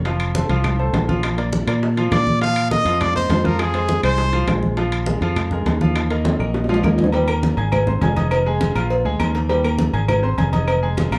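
A straight 4/4 salsa groove sets a joyful, danceable pulse: damped, low-tuned congas, soft-handed bongos and cowbell with a compressed, saturated edge, and woody claves sit in the background, while ringing metal-shell timbales and agogo bells add their own bright color. Up front, a dark, punchy fingered electric bass anchors the harmony while a polished concert grand piano with deep bass and long sustain fills out the accompaniment. A clear, close-miked trumpet with light vibrato steps forward for a brief solo phrase between 2.1 and 4.6 seconds, and after a drum fill the chords move into a new section at 7.1 seconds in this fragment cut from a longer piece.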